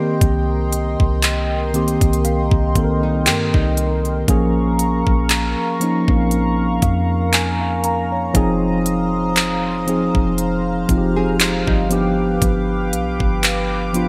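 A slow, lightly swung trap beat of knocking kick, crisp hi-hats and handclaps, up front and treated with gated reverb, anchors this moody, longing contemporary R&B excerpt, with a deep, boomy 808-style bass underneath. A mellow tine electric piano carries the Cm7, Bbm7, Fm7 and G7 chords over a shimmering, retro pulse-width pad with chorus, while a delicate, slightly out-of-tune celesta adds bell-like touches until 8.8 seconds. A fingerpicked nylon-string guitar with subtle chorus and delay surfaces from the background in brief arpeggios at 3.0 and 11.2 seconds, within a bright 1980s-style digital production and plate reverb.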